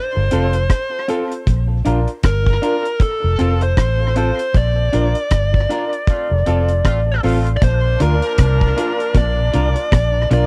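Recorded at home on cassette in a dry room, this short excerpt of roots reggae has a sunny, laid-back mood, sitting at 78 BPM in 4/4 with a swung sixteenth-note feel in Bb major, moving between F and Bb. Up front, a deep, acoustic drum kit with a tight kick, hi-hat and rim click pairs with a dark, round, punchy foam-muted fingered bass. Carrying the melody is a bluesy overdriven lead guitar, distorted and picked, coloured by cassette tape and tape echo. Behind it, a brilliant baby grand piano plays polished stabs with long sustain and audible action noise, while a hollow-body semi-hollow electric guitar adds dark, clean accompaniment in the background with tape echo. The band hits an accent at 4.5 seconds, a mellow horn section with light vibrato enters at 6.1 seconds to play a second line through tape echo, and at 7.6 seconds a very quiet, compressed clean electric guitar begins a picked riff.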